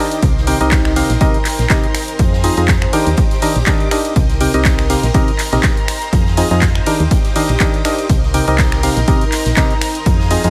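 A hollow, mellow organ stab sits up front, playing a percussive riff with chorus and dub echo that breathes with sidechain pumping through this energetic, bittersweet piano house excerpt cut from a longer piece. A punchy, tape-warm electronic kick drives the swung 4/4 groove from 0.2 s. It is layered with a house kit of finger snaps, handclaps, ride cymbal and warm hi-hats, while a very quiet, airy street-band kit adds hi-hat and snare. Underneath, a round, dark FM bass with tube saturation pumps against the kick. In the background, shimmering vintage string-machine violins hold sustained chords with ensemble chorus, and a cloudy, blurred granular pad drifts alongside them in its own built-in reverb. The harmony rocks between Ebmaj7 and Fm7 under a light overall reverb, and the kick drops out at 10.2 s just before the cut.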